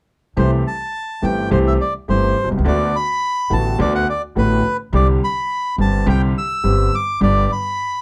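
Playful yet passionate, this short tango fragment, cut from a longer piece, moves with a loose, rubato feel over a four-beat metre. A reedy, smooth bandoneon carries the melody up front in a high register, its dark voice singing above the ensemble. Beneath it, a bright concert grand piano supplies brilliant, open accompaniment with deep bass and long sustain, while a pizzicato upright bass on gut strings adds a woody, thumpy foundation low in the range. The harmony moves from C6 through D6 and Csus2 before settling on G, and the piano and bass drop out at 7.4 seconds, leaving the bandoneon alone until 8.0 seconds. Close, detailed microphones and light reverb keep the sound intimate and clear.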